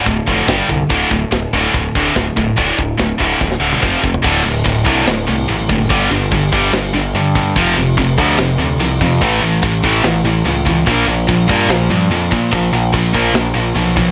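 Dark and aggressive, this heavy metal passage, cut from a longer piece, drives in 4/4 at 145 BPM in D minor, led by a bright, scooped, high-gain guitar riff, double-tracked and up front, over a growling overdriven electric bass and a tight acoustic drum kit with a firm kick, medium-tuned snare, crash, ride and toms. A drum fill from 3.4 seconds ushers in a half-time feel at 4.2 seconds that carries through to the end, with power chords moving through G5, D5 and F5, then A and finally Bb5. The sound sits in a small room ambience.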